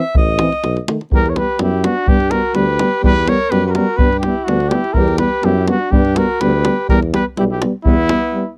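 Restless and fiery, this short cut from a longer Balkan brass band piece moves at 125 BPM in a swung 2/4, opening with a clear alto saxophone solo before a mellow, softly attacked trumpet takes the melody up front at 1.1 seconds over chords that alternate between E minor and G. A warm tuba anchors the bass while a dark euphonium sits in the background and a punchy, close-miked second euphonium adds light vibrato to the accompaniment, all driven by a tight, up-front davul. The sound is dry and close, like a 1970s studio, and the band hits a break at 8.3 seconds.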